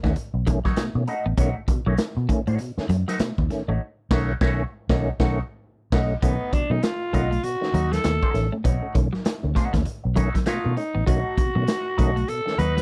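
A swung sixteenth-note funk groove in 4/4 rides on a raw garage drum kit with a punchy kick, dark cymbals and a gritty, pumping small-room sound, beside a round, foam-muted fingered bass that sits forward in the mix. Opening on a B9 chord, a picked guitar through an envelope filter and wah, a compressed clean guitar riff tucked in the background, and fat, lightly overdriven tonewheel organ stabs with key click and a slow rotary speaker fill out this playful, dry fragment, with a band accent from 3.8 to 6.2 seconds. At 6.2 seconds a raspy, growling alto saxophone steps up front for a solo full of vintage vibrato.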